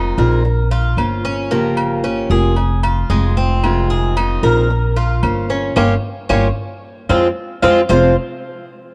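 The Cuban tres stands out up front, its picked double strings, some doubled at the octave, ringing out metallic arpeggios over a sultry Cuban son and guajira groove in a straight four. Beneath it, a thumpy, woody upright bass sits up front with pizzicato steel strings, while a boxy fingerpicked archtop guitar fills in the accompaniment, its finger squeak audible. Agogo bells and timbales ring from a small room in the background, joined at 1.0 seconds by compressed, saturated claves. The chords circle through Bbmadd9, Gm7b5, Fm and Fm7, and a band accent from 5.8 seconds, with a drum fill entering at 6.8 seconds, leads into a brief punchy pop-style trumpet note at 7.9 seconds. The dark production with light reverb gives this short cut from a longer piece a warm feel.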